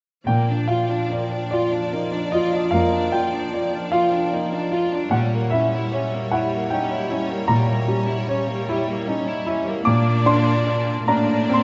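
Classical excerpt in Bb major, passionate and lyrical, moving at a slow, rubato 50 BPM in 12/8, cut from a longer piece. An up-front grand piano with a clear, slightly worn tone carries the melody alongside a bright, focused violin section sitting close but softer, while a second, richer violin section sings a lush second line and violas supply smooth, even accompaniment. An intense cello section with light vibrato holds the bass in the background, all in a moderate concert hall reverb as the harmony passes from Bb to a diminished chord at 5.1 seconds and returns home at 9.9 seconds.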